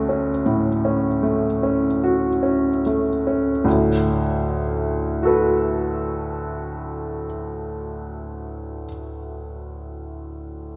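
Serene and hazy, this fragment of a longer impressionist classical piece for solo piano unfolds in D major at a rubato 38 BPM in 4/4, tuned to A4 = 437 Hz. A clear, intimate baby grand sits up front, its long sustain and audible action noise giving a natural closeness as it spans D2 to D6, slowing over Dmaj7 in the first 3.6 seconds before moving to D6. The piano rings in a church or concert hall with a wet reverb of 3.0 seconds, and the sound holds nothing above 10.5 kHz.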